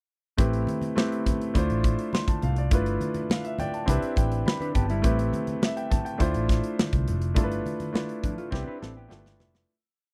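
A clear concert grand piano, a dark, foam-muted fingered electric bass, a punchy, polished studio drum kit and distant, low-tuned congas open this lush, bittersweet 1970s-style soul piece at 103 BPM in D dorian. The piano pushes rootless chords with grace notes and short fills, and the bass plays a round melodic line with ghost notes and slides under a smooth mid-tempo groove. At 4.6 seconds a mellow, clean electric guitar adds short fills in sixths between phrases over a cycle of Am7, Dm9, G13 and Cmaj7, and the dry, close, cinematic recording fades out from 7.4 seconds as the drums play a closing fill.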